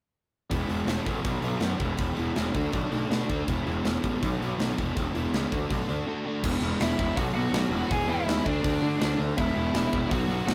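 A straight, driving 4/4 pulse at 163 BPM kicks off this rowdy, energetic punk rock excerpt in E major at 0.5 seconds, with a tight metal drum kit of bright cymbals, a medium-tuned snare and a tight kick sitting up front beside a growly, fuzz-laden picked electric bass. Two overdriven picked guitars carry the riff over a cycling E, B and D progression, one tucked into the background and the other thick and sludgy. At 6.8 seconds a dark, high-gain distorted lead guitar enters with a melody, all captured in a rough rehearsal-room recording with light reverb and warm saturation.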